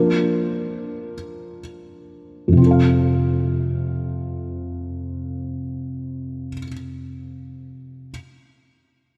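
Pop in free time and F major, this heartfelt, romantic fragment features a felt-muted upright piano, its soft, dark tone and audible action noise set up front within a lush hall reverb. The piano plays alone in the opening 2.6 seconds, slowing down over a Bb chord before settling onto F. Its short, intimate sustain carries the accompaniment through to 8.1 seconds.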